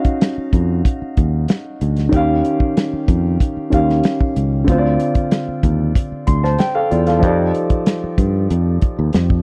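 Lush 1970s-style soul with a romantic, smooth mood, cut from a longer piece and moving in a straight 4/4. A concert grand piano carries the accompaniment from the first moment, sounding intimate and natural, with deep bass and audible action noise that bring the listener close to the instrument. The soul drum kit, also present from the start, is dry and dark, with a medium-tuned snare, a tight kick, a rolled-off top and hi-hat. A fingered electric bass, direct and amped, joins at 0.4 s and stays low in its register beneath the harmony, which drifts through rich extended chords from Ebm9 to F13. All three parts sit up front in a close, small-room studio sound with a warm, vintage character.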